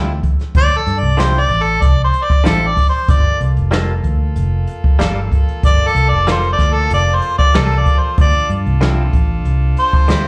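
Smoky and mournful, this short cut from a straight-eighth soul blues set heard live through a club PA has an overdriven harmonica with slapback echo carrying the melody up front over a round, foam-muted electric bass, a dark brushed drum kit with a boomy kick, and a twangy, direct-recorded clean guitar adding stabs through subtle chorus and slapback, while a brilliant, tight horn section enters at 3.1 seconds with soft sustained chords as the harmony moves from Dm9 to Gm9 and back.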